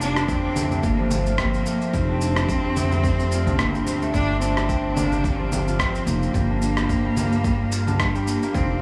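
A dreamy, reverb-soaked mix fills a huge ambient space, giving this short excerpt of organic downtempo in G minor an earthy, hypnotic mood at 109 BPM with a gentle swing on the sixteenths. Up front, a single rich, focused cello carries the bowed melody with vibrato, its sound close and touched by tape echo. A fingerpicked concert harp rings out arpeggios, also trailed by tape echo, while a woody pizzicato upright bass on steel strings anchors the low end with a sidechain pumping feel. Gritty, compressed electronic shaker, rim click and congas, re-recorded in a small room, drive the groove from the start. A punchy, layered electronic kick drum with overdrive joins at 0.3 seconds, and the passage opens on an F chord.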